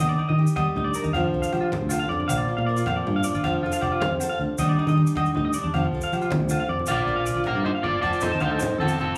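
Highlife guitar band music in a straight 12/8 at 105 BPM, joyful and sunny in mood, heard as a short cut from a longer piece. A full-bodied, fingerpicked nylon-string guitar with a deep classical tone carries the accompaniment, while a clean, twangy electric guitar sits up front spinning picked arpeggios over the chords Ebmaj7, F6 and Bb. Underneath, a round, punchy fingered electric bass anchors the groove. Low-tuned congas with soft hands and ringing agogo bells sit dry in the background, a very quiet, snappy cajon is played with hard hands, and grainy, mellow maracas join at 0.5 s. At 6.9 s a slightly broken-up, twangy electric guitar steps forward with the picked melody as the harmony moves to Bb and F. The whole band sounds as if playing live in one room, bathed in a wet, large studio reverb.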